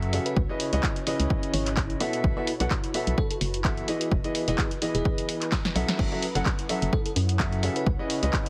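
A clear, woody upright piano riff with a vintage sheen pumps up front through this bittersweet, energetic piano house excerpt at 128 BPM in F# dorian, driven by a dry, punchy analog kick and drum machine with handclaps, hi-hat and a drum fill at 5.5 seconds, a hollow, organ-like FM bass with tube saturation, an ethereal, airy pad in the background, and a bell-like FM electric piano melody sparkling through chorus, phaser, cassette tape and digital delay over chords moving from C#m9 through B7sus4, Emaj7 and F#m7, all pressed into a heavily compressed, radio-like sound.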